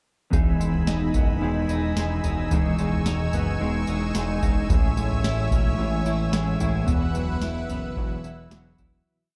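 Dream pop at 110 BPM in E major, this short, complete piece feels blissful and floating as it drifts from Emaj7 to Amaj7 at 4.7 seconds and settles on Esus2 as a fade-out begins at 6.9 seconds. A booming analog drum machine sits most forward, with a deep kick, crisp snare, tambourine and toms given an overdriven edge and a slow tom-and-kick pulse. Beneath it, a fat analog bass holds a steady eighth-note line in the low register, its detuned sawtooth and square-wave tone thick and nasal with a plucky filter attack. A clean electric guitar plays a fingerpicked roll of arpeggios colored by subtle chorus and tape echo, while a mellow electric guitar strums open chord shapes slowly in the background through tremolo and lush chorus. High above, a bright, airy unison pad with a noise layer and soft attack sustains the chords with its own chorus, all wrapped in light reverb and a dark production that carries the piece through its fade-out.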